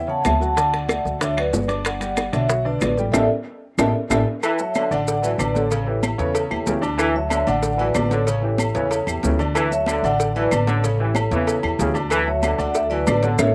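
The dry, outdoor-sounding recording carries little reverb, framing a sunny, joyful salsa cut from a longer piece, in D major at 187 BPM. A metallic vibraphone with slow motor vibrato sings the melody over a clear, slightly detuned upright piano with long sustain and a dark, up-front pizzicato upright bass, while ringing high-tuned congas, grainy maracas, metal-shell timbales with agogo bells, tight bongos with cowbell and woody claves fill out the percussion, several of them touched with slapback echo. A drum fill and band accent at 3.1 seconds lead into the second part at 4.4 seconds, where a punchy, vintage trombone section enters on a low second line with light vibrato over alternating Dadd9 and A7 chords.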